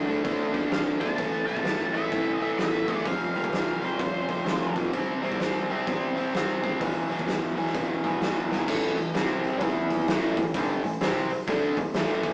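Blues rock in a power-trio, southern rock vein, this smoky, gritty excerpt swings its eighths at 128 BPM in 4/4 and sits in A minor, moving through D5, Am, F5, C and E5 before a faster turn of A5, C5, E5 and Am in the closing stretch after 8.7 seconds. An overdriven semi-hollow guitar carries the riff from the first moment, double-tracked and up front with a hollow-body tone that ranges from E2 to E4. A fuzz-drenched fingered bass growls in the background from E1 to C3, while an oversized, low-tuned acoustic kit of kick, snare, toms, hi-hat and crash hits with a fat snare and punchy kick, saturated and placed up front. An octave-fuzz lead guitar, dark and distorted, adds a short picked melody between C5 and A5 from 0.7 to 4.7 seconds. A drum fill at 8.4 seconds leads into the final passage, and the whole take has the rough feel of a rehearsal room, with moderate stone-room reverb, warm saturation and a small-speaker character.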